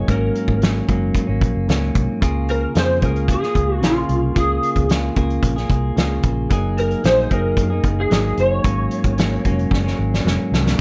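A dry recording with little reverb opens this short excerpt cut from a longer piece of sunny, dreamy indie and bedroom pop, moving at 112 BPM in a straight 4/4 in Db major. An electric slide guitar carries the melody between F4 and Db5, its dark, slightly broken-up tone played with fingerpicks, compressed, and thickened by ensemble chorus and slapback echo. Beneath it, a clean electric guitar sits up front with a warm, compressed, fingered sound, its lush chorus and warbly pitch drift giving the chords a woozy shimmer as they pass through Ab9sus4, Db6 and Gb69. A vintage muted fingered electric bass supplies a round, foam-muted, amped low end from F1 to Gb2. The loose indie drum kit, heard as a distant, roomy acoustic set with a fat snare, punchy kick, hi-hat and rolled-off top, closes the passage with a drum fill from 9.7 to 10.8 seconds.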